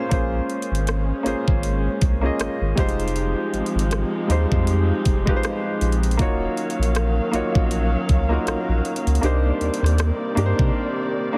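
Contemporary R&B with a longing, sensual mood, cut from a longer piece, where a clear concert grand piano plays accompaniment over lush, dark bowed strings holding sustained chords with vibrato through minor ninth harmonies from Bbm9 to Cm9. A thick, saturated sub bass with a fast attack sits up front beside an electronic trap kit of knocking kick, metallic hi-hats and rim clicks, with a swung sixteenth-note feel. Bass and drums stop at 10.7 seconds, and a brief break follows at 10.8 seconds, leaving piano and strings to continue in a small room reverb under a heavily compressed, radio-like sound.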